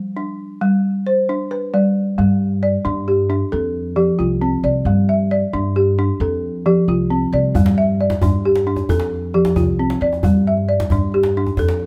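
West African traditional music in 12/8, joyful and warm, cut from a longer piece and played live in one room with light reverb. A woody, round balafon struck with soft rubber mallets opens alone with arpeggios. A thumpy pizzicato upright bass on steel strings joins at 2.2 seconds, and a medium-tuned djembe with metal rattles enters at 7.5 seconds, all three up front over harmony that shifts between G and F.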